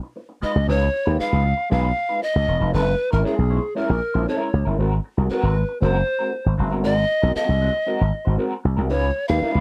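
Energetic and playful, this dry, close 1970s-style funk excerpt at 117 BPM in 4/4 sets a growly, punchy slap bass with an envelope filter up front beneath an airy, bright pan flute melody with vibrato and chiff, while a dark, clean, fingered electric guitar with wah starts alone at 0.0 seconds and comps through ninth chords on Db, Gb and Ab.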